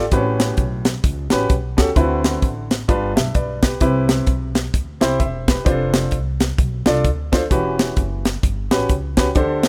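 A warm grand piano and a woody, thumpy upright bass open this short uptempo gospel excerpt together, with a tight funk drum kit joining at 0.1 seconds. The tune moves at 130 BPM in 4/4 with a swung eighth-note feel, and the mood is uplifting and soulful. The vintage, smooth piano sits up front in an accompanying role, moving through rich chords such as A13, D13, G7, Cmaj7 and F6 before landing on a rootless A13/E. Beneath it, the pizzicato bass on gut strings supplies a dark, low foundation. The dry, airy, polished kit, also up front, features hi-hat, a tight kick and a high-tuned snare. The recording carries a small room reverb and a rough home-demo mix, with all three parts playing through to the end at 9.7 seconds.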